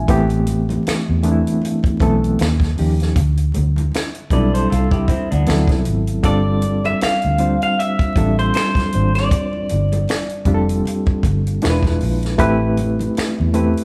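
Vinyl crackle and a large room's reverb frame this sultry, soulful neo-soul R&B cut at 78 BPM with a swung sixteenth feel, where a reedy, slightly out-of-tune electric piano with fast tremolo and a dark, foam-muted fingered bass carry the chords from Am9 to E7b9, a dry compact cocktail kit with finger snaps, hi-hat, high-tuned snare and tight kick sits up front over very quiet ringing congas, and a slightly broken-up, lo-fi electric guitar adds a brief second line at 4.3 seconds before taking the spring-reverbed melody from 6.3 to 10.6 seconds.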